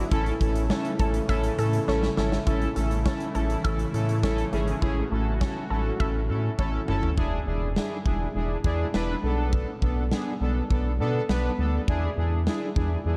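This synth-pop excerpt opens on an A chord with brassy analog synth brass carrying the accompaniment up front, a lush, thick unison pad holding sustained chords in the background, a very quiet, nasal pluck tracing arpeggios, and a round, deep analog bass, with a huge arena drum kit of hi-hat, kick, snare and toms joining an instant later. At 102 BPM in a straight 4/4, the mood is nostalgic yet bright. The drums have an acoustic hall sound with a pumping room, a punchy kick and a medium-tuned snare, and drum fills arrive at 1.9 s and again just before the change. By 7.2 s the pad and pluck have dropped away, leaving brass, bass and drums over a progression of E7, Bm7 and E7. The brass is fat and mellow with chorus, vibrato and a filter sweep, and the whole excerpt sits in a dark, warm production with light studio reverb.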